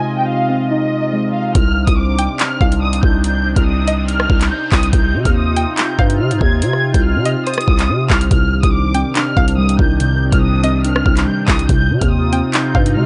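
Drill hip hop in C minor at 142 BPM with a half-time feel, dark and menacing: a woody, lush violin section carries the melody through delay over a sweeping, ring-modulated pad and muted felt-like synth keys, then at 1.6 seconds a growling 808-style bass and an up-front drill kit of knocking kick, metallic hats, handclaps and rim clicks arrive, joined at 2.2 seconds by a twangy resonator pluck, all in a dry, gritty recording with digital ambience.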